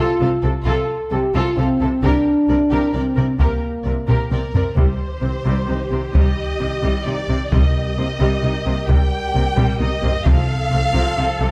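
Close, dry taiko drums struck with hard sticks drive this epic, relentless orchestral film-score excerpt in C dorian at 131 BPM in 3/4, entering at 2.0 s with drum fills, over lush, vibrato-rich violins carrying both the melody and a second line, distant, expressive violas, mellow sustained French horn chords, an even, bowed cello and double bass foundation on C, and articulate timpani hits in the background from 7.5 s, set in a moderate recital hall reverb.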